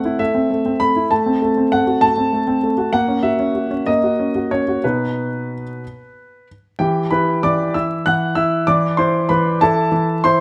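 Swaying in 6/8 at about 64 beats per minute counted in dotted quarters, the pulse bends with a supple rubato throughout this short excerpt from a classical-period piano sonatina. A solo grand piano carries everything from 0.0 to 10.4 seconds, ranging from B2 up to F#6 with a polished, intimate tone, long sustain and audible action noise that keeps it up front and present. The mood is restless yet elegant: the harmony moves from Am through F#dim/A and F#7/A# to B, then shifts at 6.8 seconds into a second section built on Em and Cmaj13/E. Close, detailed microphones capture the instrument inside light reverb, and a vinyl crackle runs beneath the recording.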